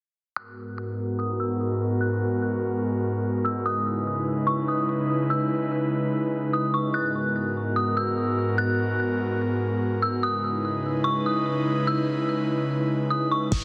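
A half-time 4/4 pulse at 146 BPM carries this hazy, melancholic atmospheric cloud-rap passage in G# minor, where an up-front airy, breathy pad with chorus, a low-pass filter and sidechain pumping sustains G#m7 and C#m7 chords beneath an eerie, inharmonic, dark detuned FM synth bell melody coloured by chorus, delay and a low-pass filter, while a filter sweep runs from 0.4 to 13.5 seconds before a clean, boomy 808-style bass, a booming analog drum machine with a deep kick and metallic hats, and an electronic downlifter arrive at 13.5 seconds, the mix sitting in light reverb with a heavily compressed radio sound.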